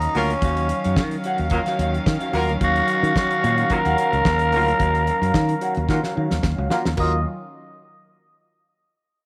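A growling tenor saxophone carries the melody from the first moment of this sultry, danceable disco excerpt at 110 BPM in Eb minor, raspy and up front with light vibrato and tape echo, as the band opens on an Ebm9 chord. Beneath it, a fingered electric bass sits direct and forward, and a damped 70s drum kit with a fat snare and tight kick keeps a straight 4/4 feel on kick, snare, hi-hat and crash cymbal. A studio string section holds sustained chords with a gut-string, period-style tone, while a twangy clean electric guitar adds accompaniment in the background. A dark horn section enters at 0.1 s with punchy, distant stabs doubled in octaves. A filter sweep runs through the opening, and a drum fill from 5.9 s leads into a new section at 7.0 s, the whole set in a light reverb.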